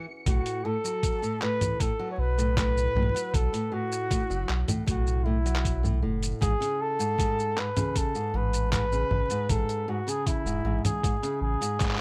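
A straight 4/4 groove at 78 BPM comes from a muffled, thumpy electronic kick and a pitched-down sampler-style kit of congas, handclaps, hi-hat and shaker, both compressed and tape-warm. This autumnal, wistful folktronica piece, cut from a longer work, opens with a fingerpicked flamenco guitar playing acoustic arpeggios alone at 0.0 seconds, with finger squeaks audible, before the other parts arrive at 0.3 seconds. Up front, a mellow flugelhorn carries a jazz-style solo melody with vibrato and a soft attack, its distant, roomy tone trailed by tape echo. Beneath it, a deep, round sine sub bass with a fast attack and sustained notes, thickened by tube saturation, sits forward in the mix and stops just before the end. The harmony moves from B5 to Amaj9 at 6.4 seconds, and the dry sound is dusted with vinyl crackle.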